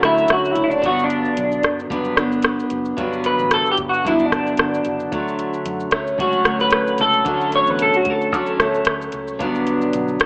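A bright, twangy electric guitar through a small old amp carries the melody with a slightly broken-up edge and lush chorus, falling silent at 8.9 seconds in this dreamy, sunny slice of indie and bedroom pop at 112 BPM in D major, with a light 16th-note swing. Beneath it, a full-bodied jumbo steel-string acoustic is picked up front with chorus and a warbly pitch drift over Dmaj7 and Gmaj7, while a dark, round, foam-muted fingered bass sits low. A soft vintage rhythm box with a deep kick, metallic hats, rim click and shaker brings 12-bit sampler grit, and the whole cut carries light reverb, digital ambience and an AM radio tone.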